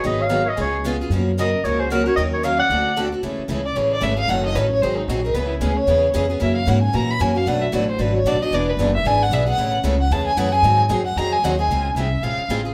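Swinging and charming, this fragment of jazz manouche acoustic string swing moves at 227 BPM, as a bright, punchy clarinet with scooped notes carries the melody until 3.1 s while a bowed violin, expressive with vibrato and portamento, plays a second line beneath it before taking a solo from 3.2 s as the music settles into A major. Underneath are two picked steel-string acoustic guitars, one boxy and up front and the other fresh-stringed in the background, and a woody, thumpy pizzicato upright bass, with the band playing live in one room under a wet studio reverb.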